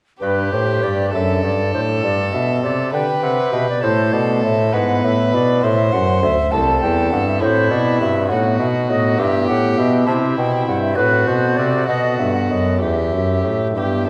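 A bright, airy baroque flute with a woody straight tone and crisp attack carries the melody of this radiant, serene baroque-style sonata movement in 6/8 at 67 BPM, played with rubato and turning from G major to E minor at 7.4 s. Beneath it, a warm, nasal gut-string violin adds a close, reedy second line, while a pipe organ on light flute stops with chiff sits up front as continuo and a clear bassoon with light vibrato holds the bass. The recital hall reverb is wet, and the dark production carries vinyl crackle in this brief cut from a longer piece.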